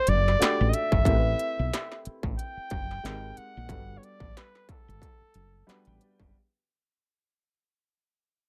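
This R&B and neo-soul fragment, taken from a longer piece, moves at an introspective, soulful 91 BPM in 4/4 with a gentle swing on the sixteenths. A clear flugelhorn carries the melody up front in a pop style, its light vibrato and smooth top giving the solo line a graceful ease. An upright piano with a natural, woody tone supplies the accompaniment over chords that drift from Gmaj9 to Am9, touch G#maj9 and settle back on Gmaj9. Beneath it, a fretless electric bass sits up front with a dark, round, punchy sound colored by analog chorus, while an electronic, produced drum kit adds a distorted kick, a clanging snare and silky hi-hats. Light reverb frames the group as the whole passage fades out, with a piano fill arriving at 5.3 seconds.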